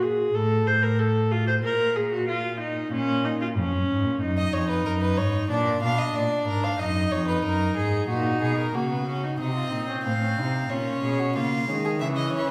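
Driving and solemn, this baroque-style fugue for a period-style string quartet moves at 93 BPM in 4/4 in E-flat minor. A smooth-topped viola and a rich cello open it together, and a nasal, airy-bowed violin joins at 4.4 s on a second line. A reedy violin enters with the melody at 9.4 s, all four gut-string players heard from further back in a reverberant recital hall.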